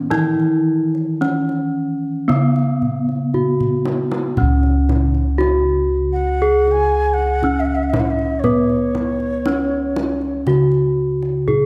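This passage, cut from a longer piece, has a vintage, band-limited sound set in a moderate scoring-stage reverb, with the bronze instruments placed up front. It is a serene, shimmering slice of Javanese gamelan in a straight 4/4. A ringing bronze metallophone struck with a wooden mallet carries the melody throughout. A second metallophone, whose paired tuning gives off shimmering beats, adds accompaniment only until 4.4 seconds. Beneath them, round, mellow bossed gongs played with padded beaters hold the bass. A tight, distant kendang played with soft hands sits back in a large room and supplies a drum fill from 3.3 to 4.4 seconds. In the second section, an airy, end-blown bamboo xiao with vibrato and a crisp attack enters as a second line at 6.1 seconds, floating distantly above the bronze.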